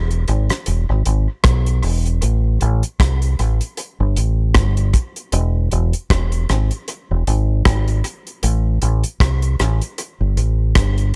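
A deep, fingered electric bass opens this cut from a longer lovers rock reggae piece, its dark, round and punchy tone sitting up front in the mix. At 0.1 s a damped 70s drum kit joins, with hi-hat, a tight kick drum and rim clicks, its acoustic sound kept dry and close. Gated reverb and tape echo colour the drum kit, giving the hits a clipped tail and an echoing repeat. The groove moves at an unhurried pace in four, with a gentle swing on the sixteenths that lends it a relaxed sway. The overall room is close and intimate, and the mood is smooth and longing, with bass and drums carrying the whole 11-second passage together until both stop at 11.1 s.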